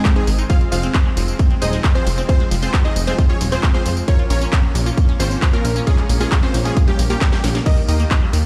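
Played through a big sound system in a bare stone room, this short cut from a longer uplifting trance track has a hard, echoing ambience while the instruments themselves sound nearly dry. At 134 BPM in a straight 4/4 and F minor, the mood is driving and euphoric, moving from Fm at 0.5 seconds to Bbm and then Ebadd9. An overdriven, punchy electronic kick sits up front with a house kit of cracking snare, handclaps, hi-hat, ride, crash and tambourine, capped by a drum fill at 7.2 seconds, while a funky, plucky analog bass pumps under everything from 0.3 seconds. The lead is a lush, detuned unison pluck carrying the melody with a gritty 12-bit sampler edge and dub echo, joined by a bright, evolving supersaw stab as a second line with delay. Behind them a thick, warbling vintage pad holds sustained chords through chorus and sampler grit, and a squelchy, resonant liquid acid bass spins arpeggios in the background, smoothed by lush chorus and delay.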